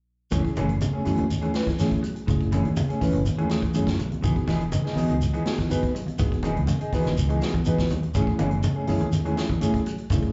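A driving, hypnotic afrobeat groove starts at 0.3 s with the whole band at once, heard as a live gig through a club PA with a moderate room reverb and a dulled, muffled top end. The round, amped fingered electric bass sits loudest in the mix, anchored by a vintage acoustic drum kit with a punchy kick, a medium-tuned snare and hi-hat. Low-tuned congas played with soft hands sit in the background beside a grainy, saturated shekere carrying a slapback echo. A clean, hollow-body semi-hollow guitar plays picked arpeggios in a low register, while a dark, fingered electric guitar adds stabs, both touched by plate reverb and slapback echo. A worn, slightly out-of-tune tine electric piano supplies mellow accompaniment over a vamp from F#m9 to Emaj7 and back to F#m9 at 8.2 s, in a short cut from a longer piece.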